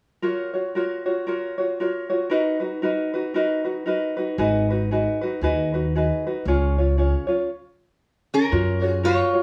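Swung eighths in an easy 4/4 carry this relaxed, sunny Hawaiian fragment, as a light, fingerpicked tenor ukulele picks through major-seventh and minor-seventh chords from the start. A woody, growly pizzicato upright bass joins at 4.4 s, the band pauses on a stop at 7.5 s, and a nasal, metallic lap resonator guitar played with fingerpicks and slide steps in at 8.3 s to take the melody. All three sit up front, with a moderate studio reverb that lends a touch of distance.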